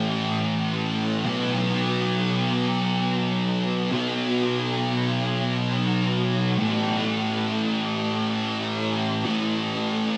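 A rock fragment in free time, this hazy, dreamy passage is cut from a longer piece and runs just over ten seconds. A single thick fuzz guitar plays alone throughout, electric and picked, its bright distorted tone double-tracked and placed up front. Its range sits between A2 and B3, and the tuning rests slightly below standard at A4 = 439 Hz. The part moves from an A5 chord to B5 at 1.3 seconds, returning to A5 at 6.6 seconds. Ensemble chorus and analog delay thicken the fuzz, while a moderate plate reverb with a 2.8-second tail soaks the mix in a dreamlike wash.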